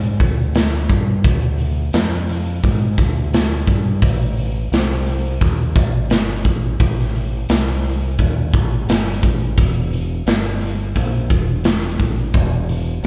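Blues rock in a power-trio, southern-rock vein, this short excerpt moves at 86 BPM in a straight 4/4 with a raunchy, swaggering mood. A growling fingered electric bass carries the low end from the very start, its overdriven tone both direct and amped, ranging from E1 up to Ab2. A big acoustic rock drum kit joins at 0.2 seconds, sitting up front in a big room with a punchy kick, a medium-tuned snare and hi-hat. The drums sit slightly louder than the bass, giving the groove a forceful push. Light reverb and the feel of a band playing live in one room lend the recording an immediate, unpolished presence throughout its 13.1 seconds.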